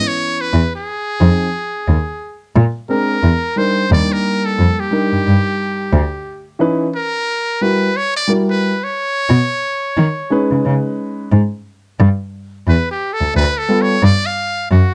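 Smoky and nocturnal, this jazz-hop excerpt at 89 BPM sways with a swung 16th-note feel as a metal-muted trumpet carries a buzzy, breathy solo melody from the very start. Beneath it, a dark, mellow concert grand piano with short sustain comps through rich extended chords until 13.9 seconds, while a single bowed cello enters at 0.5 seconds to anchor the bass line with expressive vibrato and portamento. All three parts sit up front in a dusky studio reverb that gives the production a velvety, late-night glow.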